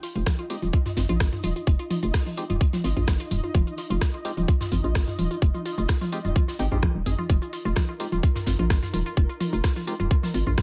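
A tight, up-front electronic kick drives this clinical, hypnotic minimal techno at 128 BPM in F minor over a single Fm7 chord, alongside a knocking, sidechain-pumped FM bass, a tape-warm analog drum machine ticking cabasa, hi-hat and rim click, small-room electronic toms, a detuned square-wave pluck riff with chorus and dub echo, a phased, wave-folded organ stab, a brushed vintage kit with a rolled-off top, and a flickering granular texture in the background.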